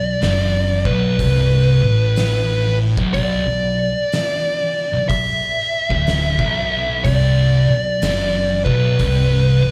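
A swung 4/4 groove at 62 BPM drives this heavy, ominous stoner and doom metal excerpt in B minor, heard live through a club PA, where an up-front, compressed fuzz lead guitar with slapback and tape echo carries the melody over two thick fuzz guitars, one very quiet and one distorted in the background, both grinding out a low riff, while a woody, growly overdriven upright bass sits underneath and an oversized, low-tuned drum kit with a fat snare, punchy kick and hi-hat pumps in a bright stone room from 0.2 to 9.3 seconds.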